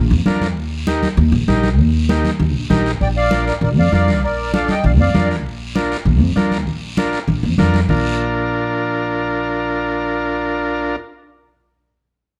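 Cumbia with a joyful, festive feel, this short cut from a longer piece moves in a straight four-beat pulse. A woody pizzicato upright bass with steel strings sits up front and carries the low end, while close, dry congas with a thick skin and a raspy, distant guiro heard in a large room drive the percussion. A vintage, buzzy combo organ with light vibrato holds the accompaniment in a clean, forward voice from the opening and plays through to the finish. At 3.0 seconds a reedy, sweet accordion with light tremolo tuning steps forward with a smooth melody that lasts until 5.3 seconds. The percussion stops at 8.0 seconds, leaving bass and organ in a closing passage, all framed by light reverb and a dark, warm production.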